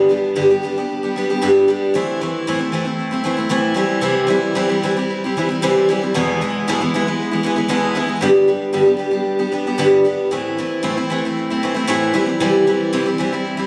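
A lone picked steel-string acoustic guitar opens this wistful, reflective rock fragment in A minor at 114 BPM, its bright, full-bodied jumbo tone and fresh strings sitting up front, with audible finger squeak and a touch of digital delay. It moves through G, Am, C and E over a straight 4/4 feel, spanning the full 13.7 seconds alone and cut from a longer piece. Captured on a phone in the room, the sound carries a light studio reverb and a tuning of A4 = 438 Hz.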